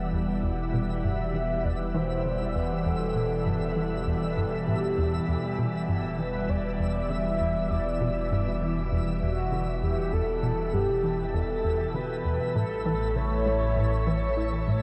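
A mellow, horn-like sawtooth lead sings over a lush, detuned unison pad carrying chorus and phaser, with a round sine sub bass underneath and a twinkling granular shimmer sparkling high above, all setting a hypnotic, mysterious tone in this ambient, sequencer-driven space music at 99 BPM in E minor. From 0.1 s a tight, punchy sequencer bass riff drives the piece with filter-plucked tones roughened by vintage 12-bit sampler grit and tape echo, while the lead carries chorus and its own tape echo. Bathed in a wet shimmer reverb with a dark production, the harmony rests on Em7 before moving to A7 at 12.6 s.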